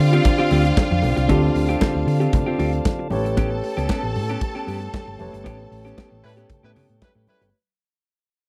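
A dark, round hollow-body electric bass, fingered and amped, sits up front in this sultry, danceable disco passage at 115 BPM in 4/4 with a straight feel, tuned slightly flat to A4 = 439 Hz. Beside it, an airy, polished acoustic drum kit with a punchy kick, a medium-tuned snare and hi-hat drives the groove, while ringing congas stay in the background. A clean, compressed picked electric guitar and a tine electric piano heard through its built-in speakers fill out the accompaniment, and a smooth tonewheel organ with key click holds sustained chords through a stopped rotary speaker. A lush, distant symphonic string section with vibrato carries a second line over the harmony, which moves from Dm7 to A9 at 3.1 seconds. Near the end, a punchy pop-style horn section with slapback echo adds faint stabs from 6.2 seconds, as the band accents the closing bars within a fade-out in a dry, close 1970s-style studio sound, cut from a longer piece.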